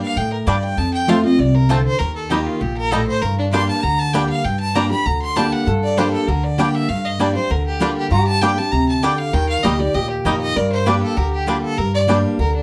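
Haunting and driving, this straight 196 BPM bluegrass excerpt in G minor, cycling through Gm, F and Eb, is led by a clear, earthy bowed fiddle with light vibrato over a picked dreadnought acoustic guitar with audible finger squeak, a thumpy, woody pizzicato upright bass, twangy, percussive banjo arpeggios and bright double-string mandolin stabs, while a mellow, nasal lap resonator guitar played with slide and fingerpicks adds a metallic second line from 5.7 s, all set in a modest small-room ambience.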